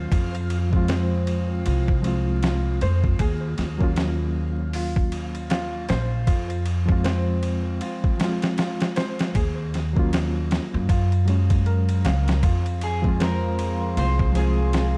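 Dark and brooding, this trip hop excerpt moves at 78 BPM in F phrygian with a swung sixteenth-note feel, built on a gritty, pitched-down boom bap drum kit with a thumpy kick and a woody pizzicato upright bass carrying tube saturation, both up front, under a reedy electric piano with tremolo, sampler grit and tape echo, and soft felt-muted upright piano arpeggios through delay. A reversed, granular texture hovers very quietly until 12.4 seconds, when a detuned analog pad with chorus slips into the background, and at 12.8 seconds a slightly broken-up slide guitar takes the melody. The production is dry and dusky, with vinyl crackle over the whole mix.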